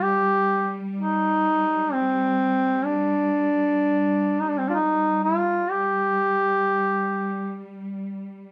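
A duduk and a bowed cello section begin together, the duduk carrying a solemn, mournful melody in the middle register while the cellos sustain a single low G3 drone beneath it. This short fragment of a longer Caucasian folk lament moves in a loose, rubato three-beat metre. The duduk sits up front as a solo voice with a warm folk character, its scooped notes heard through a distant, roomy quality. Underneath, the symphonic cello ensemble is much quieter, a rich and lush bed with vibrato and a focused, close presence. Light reverb and detailed close miking shape the recording, and the duduk falls silent at 7.7 seconds, leaving the cellos to hold their drone until 8.5 seconds.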